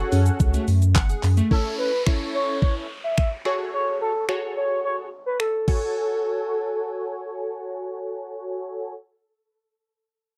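A crisp 8-bit digital drum machine, overdriven and thumpy, drives this energetic, confident dance-pop excerpt in F# minor, with crash cymbal, finger snaps, handclaps, hi-hat, shaker and kick up front until 5.8 seconds. A funky, punchy polysynth comp with chorus, filter sweep and sidechain pumping runs throughout, joined briefly at the start by a round sub bass and a glassy, crystalline wavetable pluck with tape echo. At 1.5 seconds a smooth, expressive synth lead with vibrato takes the melody over a faint electronic downlifter, all set in a dry, close 1970s-style studio sound.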